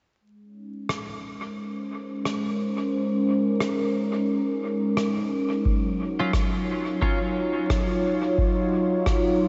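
This ambient dub passage, cut from a longer piece, moves at 88 BPM in 4/4 with a swung sixteenth-note feel and a deep, meditative mood. A smooth, detuned analog pad sits up front with sustained chords, its soft attack and long release colored by subtle chorus and a filter sweep, shifting from Bbm11 to Ebm9 at 5.7 seconds. A rim click enters at 0.9 seconds, sounding as if it were in a big room and trailed by dub echo. At the chord change, a deep, tape-warm electronic kick drum lands up front. At 6.2 seconds, a brief burst of bright, twangy clean electric guitar stabs appears, lushly chorused and thrown into dub echo. The whole mix is soaked in a huge ambient reverb with a dreamy haze, a bed of vinyl crackle and a dark top end.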